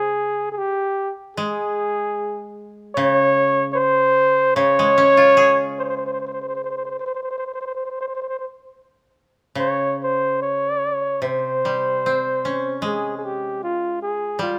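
The rhythm flows in a free, rubato four, breathing rather than holding a steady pulse. This is calm, austere Japanese chamber music, taken from a longer piece and lasting 14.6 seconds. A warm flugelhorn carries the melody up front as a solo, its smooth top and vibrato lending a jazz style to the traditional setting. Beneath it, a koto played with fingerpicks supplies the accompaniment throughout, its tone bright, woody and dry, and it sits lower in the balance. Close, detailed microphones and a light reverb keep the sound intimate, and the music moves into a new section at 9.6 seconds.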